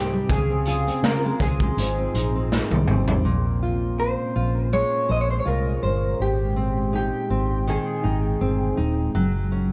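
A fingerpicked nylon-string guitar sits up front in this laid-back, nostalgic bedroom pop excerpt, its full-bodied, deep classical tone touched by subtle chorus and a vibrato effect. Beneath it, a dark, foam-muted electric bass gives a round, amped low end at 81 BPM in 4/4 with a light sixteenth-note swing. A raw garage drum kit with a punchy kick, gritty saturation and a rolled-off top plays in a small, pumping room from 0.3 to 3.2 seconds, closing its brief run with a fill. Above, an electric guitar through a small old amp carries the melody in a slightly broken-up, compressed voice, bathed in lush chorus and analog delay until it drops out at 8.8 seconds. An ethereal, airy pad of detuned sawtooth and triangle tones holds mellow, sustained chords in the background, while the harmony moves from Dbmaj7 and Abmaj7 into Bbm9, returns to Abmaj7, and then reaches Gbmaj7. Light reverb and studio ambience frame a dark, warm production.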